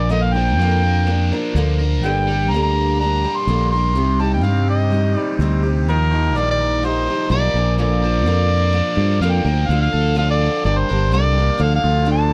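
Wistful and reflective, this rock excerpt moves at 126 BPM in a straight 4/4 in G minor, with a mellow, vintage harmonica carrying the melody up front with scooped notes while a boxy picked steel-string acoustic guitar accompanies. A biting overdriven guitar, double-tracked and treated with phaser, plays a riff beneath them, and a fingered electric bass sits up front with a direct, amped tone. The dry, close 1970s-style studio sound moves through Bb, Gm, Cm and Ebadd9 before shifting to a Dm and Gm passage at 9.7 seconds.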